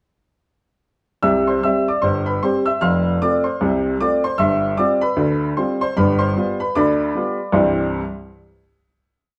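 Ragtime piano in C major at 76 BPM in a swung 2/4, tuned to A4 = 445 Hz, this short, lively and cheerful complete piece features a solo upright piano that sounds clear, woody, open and up front, spanning F1 to F6 from 1.2 to 8.0 seconds with the tune in filled octaves over a stride bass, moving through C, F, G7sus4 and G7 before landing on a final C chord at 7.5 seconds, all captured live in a large studio with a wet reverb.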